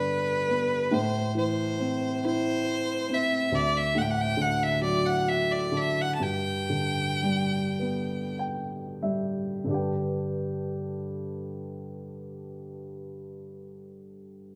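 A clear, focused fiddle with light vibrato carries a tender, wistful Celtic slow air in a rubato 6/8, bowed up front over a woody upright piano with long sustain that fills in as the pace slows, then continues alone after the fiddle stops at 8.4 seconds, all set in a moderate recital hall reverb in this short cut from a longer piece.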